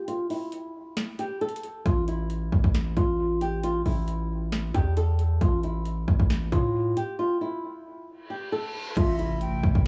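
Brooding, eerie trap hip hop in A minor at 135 BPM with a half-time feel, cut from a longer piece: a boxy, fingerpicked flamenco guitar melody with audible finger squeak, low-pass filtering and dub echo opens through a filter sweep, joined by a trap kit of hard-clipped kick, sharp snare, metallic hats, finger snaps and crash, then a saturated, aggressive distorted 808-style bass entering at 1.9 seconds, before a reverse cymbal builds from 8.2 seconds into an impact at 9.0 seconds, where an airy, hollow jazz flute with dub echo arrives on an A minor chord, followed at 9.3 seconds by a very quiet, glassy FM pad with chorus and tremolo, all in an echo-heavy mix with small-room ambience.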